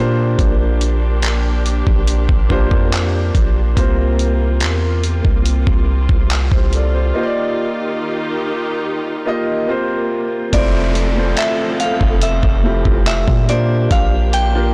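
A deep, mellow 808-style bass sits up front beneath a gritty, compressed sampler-style drum kit of thumpy kick, hi-hat, handclaps and a softly clipped snare that enters at 0.4 seconds, while a warm concert grand piano with open, long sustain and a lush, woody bowed string section hold tender, romantic chords in this slow 71 BPM contemporary R&B excerpt in F major. A glassy, crystalline FM synth bell with chorus then takes the melody at 10.5 seconds and an electronic downlifter joins at 10.6 seconds, the whole recording dry, blown-out and overdriven.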